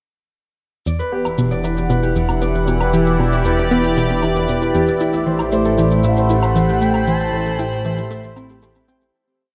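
An echo-heavy mix bathed in a moderate plate reverb gives this short piece of ambient, sequencer-driven space music a hypnotic, cosmic atmosphere in E minor at 116 BPM in a straight 4/4. A tight sawtooth synth drives a repeating five-step riff that drifts against the bar, its plucky, detuned tone softened with chorus, shimmer reverb and delay. A Celtic harp rings out mellow fingerpicked arpeggios in a seven-step loop of its own, while a bright, up-front resonant pad sustains slowly shifting chords from Em7 to Am7 above a fat, saturated, wave-folded analog bass holding the roots. A light electronic pulse of cabasa and low woodblock ticks along through delay in the background. At 5.5 seconds a smooth, dark synth lead enters with expressive call phrases full of vibrato and a moving notch, and the whole piece fades out from 6.4 seconds to its close at 9.1 seconds.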